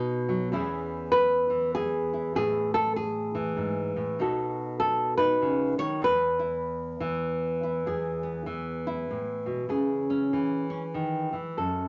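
This short excerpt of solo fingerstyle folk opens straight away on a lone nylon-string guitar, fingerpicked and sitting up front in the sound, with a full-bodied, deep classical tone and audible finger squeak along the strings. The mood is warm and peaceful, set in a lilting triple metre with a gentle swing to the eighth notes. The harmony moves from E6 through A5 and B7, then the chords drop away at 6.0 seconds before the second section begins at 7.9 seconds on E and turns to C#m. The guitar ranges from its low bass strings up into the upper register, giving the single instrument a rounded, complete feel. A small, wet room reverb surrounds it with a short, intimate tail, and the top end is soft and mellow, since the sound has nothing above 7.5 kHz. The passage is cut from a longer piece and ends at 11.9 seconds.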